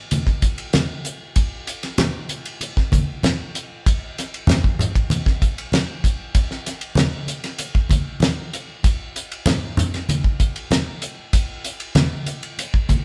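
Jazz excerpt at 96 BPM in a straight 4/4, intense and slick, where a damped, dry 70s drum kit sits up front with a fat snare, tight kick, hi-hat and ride cymbal alongside low-tuned, thick-skinned congas, both playing from 0.1 to 13.0 seconds as a band performing live in one room with a moderate stone-room reverb.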